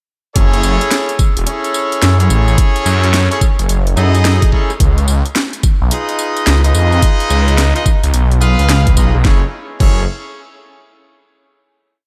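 A swung 16th-note glitch hop groove at 108 BPM drives this short, funky and gritty piece in F# dorian, built on an overdriven, knocking electronic kick up front and a layered drum kit whose cracking snare, bright hats, rim, tambourine and crash form a swung, edited beat. A swirling, thick detuned saw bass with phaser chops out saturated phrases, while a bright jazz horn section punches syncopated rootless chord stabs doubled in octaves, with light vibrato, sidechain pumping and analog delay. The drop moves from F#m9 to C#7 at 4.8 seconds before a closing F#m9 chord at 9.2 seconds, all set in a light digital reverb.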